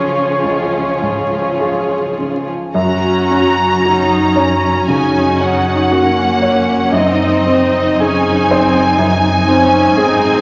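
A clear baby grand piano carries the melody from the opening, its polished, present tone ringing with short sustain. Beneath it, an intense, vibrato-laden violin section plays a second line, a focused viola section sits up front in the accompaniment, and a cello section holds the bass from the background, while a solo oboe with light vibrato plays a single note until 2.2 seconds. This lush, passionate romantic movement for piano and orchestra moves slowly at 51-63 BPM in 4/4 with a rubato feel, in F# major, and is cut from a longer piece. At 2.8 seconds a second violin section joins on the melody, smooth and even in the background, alongside a very quiet, mellow French horn section on sustained chords and a chamber double bass section adding a deep bowed foundation. The harmony moves from Db to F# and reaches G#7/F# at 6.9 seconds. A wet scoring-stage reverb surrounds the players, and a vinyl crackle with a rolled-off top end lends the recording an aged surface.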